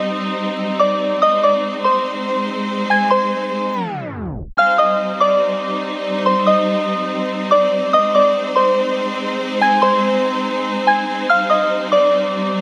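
A soft, pure FM synth bell and a lush bowed string section open this tense, ominous hip hop fragment together, both sounding from the first moment to the end at 12.6 seconds. The bell carries the melody in a high register, its fast attack and decaying tone made mellow by chorus, a low-pass filter and delay, and it sits up front in the mix. Beneath it, the clear symphonic ensemble holds sustained chords with a focused, vibrato-rich sound, moving between C minor and A-flat in a slow half-time feel. Vinyl crackle and light small-room ambience give the whole track a dusty, close character. A tape stop between 3.7 and 4.6 seconds marks the shift into the longer second section, where the same dark chord pairing returns under the bell.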